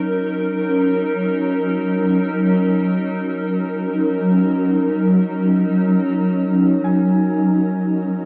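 Serene and luminous, this free-time ambient passage, cut from a longer piece, rests on an up-front granular cloud pad whose cloudy, blurred sustained chords move from D#m7/F# to D#m7, swimming in its own reverb plus a shimmer reverb. A filter sweep reshapes the pad from 5.9 seconds, and at 6.8 seconds a faint felt-muted upright piano enters with soft, mellow arpeggios that are also touched by shimmer. The whole sits in a dark production with a cathedral-like reverb that rings for 5.5 seconds.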